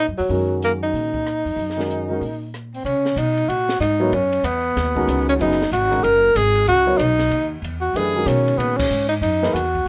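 Spiritual and searching, this modal jazz excerpt swings at 188 BPM in 4/4, centered on C# dorian and moving from Ebm7 to C#9sus4 at 2.9 seconds. A breathy tenor saxophone carries the melody up front as a soloist, its mellow tone shaded with vibrato, soft attacks and scooped notes. Beneath it, a woody upright bass played pizzicato on gut strings gives a thumpy foundation, while a dark baby grand piano enters at 0.3 seconds with intimate accompaniment, its action noise audible. A compact cocktail drum kit sits low in the mix, dry and acoustic, with dark cymbals across ride, crash and hi-hat, a high-tuned snare with rim clicks, and a punchy kick. The band strikes an accent together at 8.8 seconds, and light reverb gives the group a close, gentle space.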